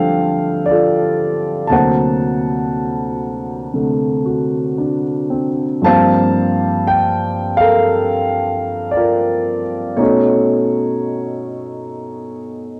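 Solo jazz on a dark grand piano, this short excerpt cut from a longer piece carries a warm, sophisticated mood at a slow 58 BPM in 4/4, with a swung eighth-note feel that bends freely in rubato. The piano plays alone for the full 12.8 seconds, reaching from D2 up to A5, and sits up front with a mellow tone and long sustain. Its harmony moves from Dm7 to D7b13 at 1.7 seconds, settles on Gm11 at 5.9 seconds, and closes on B9 at 10.0 seconds. A moderate spring reverb and a small room ambience surround the instrument. The piece was recorded at home on cassette.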